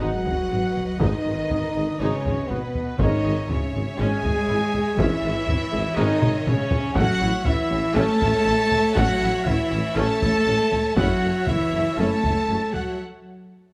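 Heroic and epic, this cinematic orchestral film score excerpt moves at 120 BPM in a straight 4/4, cut from a longer piece and moving from G#m7 through C#m/G# and A to F#m7. A huge, bright impact is barely audible at the very start, and a heavy-sticked, band-limited taiko ensemble drives the music from 0.3 seconds, with a drum fill around 6.2 seconds. Lush, bowed violins carry a smooth, distant melody over a focused second violin line in the background, while expressive violas with portamento, woody cellos and even double basses fill out the strings with vibrato. Up front, a mellow, tight French horn section holds soft-attack sustained chords, a clear, roomy trumpet section punches out stabs, and a very quiet, close-miked tuba plays in the low bass register. Round, soft-mallet timpani sound briefly from 3.0 seconds, and the whole passage sits in light reverb with close, detailed miking before a short break at 13.0 seconds.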